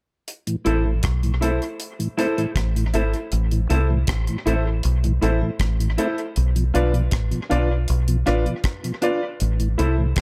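Meditative and serious, this roots reggae passage is cut from a longer piece and moves in a straight 4/4. A deep reggae drum kit sets the pulse with hi-hat, rim clicks and a tight, dry kick, its hits trailing into dub echo. Sitting up front as the loudest part, a fingered electric bass gives a dark, round, punchy low end with a foam-muted, direct-amped tone. Around it, a mellow tonewheel organ adds clean chorus vibrato and the slow turn of a rotary speaker, a hollow-body electric guitar plays picked, dusky accompaniment through tape echo, and a vintage grand piano places smooth stabs higher up. The harmony rests on an Am chord, moves to Bdim at 6.4 seconds and returns to Am at 9.4 seconds, with the whole band heard in a studio ambience.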